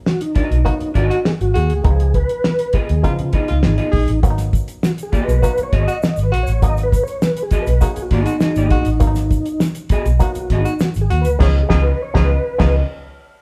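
Funk at 101 BPM in G# dorian, cool and driving, cut from a longer piece, where a soft, flute-like tonewheel organ with chorus vibrato and slow rotary speaker takes the lead over a cloth-damped, thuddy drum kit with a fat snare and dark cymbals, a round, foam-muted fingered bass up front, stringy auto-wah clav stabs, a clean hollow-body jazz guitar, a breathy tenor saxophone second line with scooped notes, and a grainy shaker in the background from 4.2 to 11.4 seconds, all moving between G#m7 and C#9 in a live room with light reverb before a band accent at 11.4 seconds.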